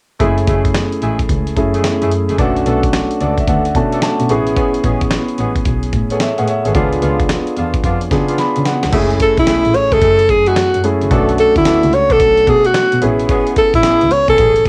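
This slick, confident new jack swing excerpt opens at 0.2 seconds with a concert grand piano, a mellow horn section, a bowed double bass and a dusty sampler-style drum kit, riding a swung sixteenth-note feel in 4/4. The piano sits up front with deep bass and long sustain and adds fills along the way. The horns punctuate with smooth-topped, octave-doubled jazz stabs, and both piano and horns carry a cassette-tape character. Beneath them the double bass is smooth and even with vibrato, while the gritty, compressed drums deliver a thumpy kick, medium-tuned snare, hi-hat and crash, with a short fill leading into the second section at 8.9 seconds. At 9.2 seconds a breathy alto saxophone takes the lead, close-miked and intimate with a whispered subtone, soft attack and vibrato, over rich minor-ninth, seventh and major-ninth chords. Light reverb and a home cassette recording give the R&B groove a homespun glow.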